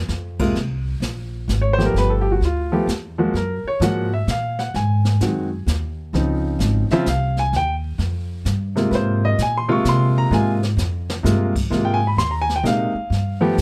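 A close, detailed recording with little reverb puts a warm baby grand piano and a woody upright bass up front in this short excerpt cut from a longer jazz piano trio piece in Ab major. At 129 BPM in 3/4 with a swung eighth-note feel, the mood is warm and swinging. The piano carries the melody as a solo from 0.6 seconds to the end, its natural, short-sustained tone ranging over chords such as Abadd9, G9, Gbmaj9 and Dbmaj9. Beneath it the pizzicato bass, with steel strings, holds the low end throughout. A brushed drum kit sits further back, with dark cymbals, a medium-tuned snare and a boomy kick in a small, natural-sounding room, and it plays a short fill at 10.3 seconds before the opening passage comes round again.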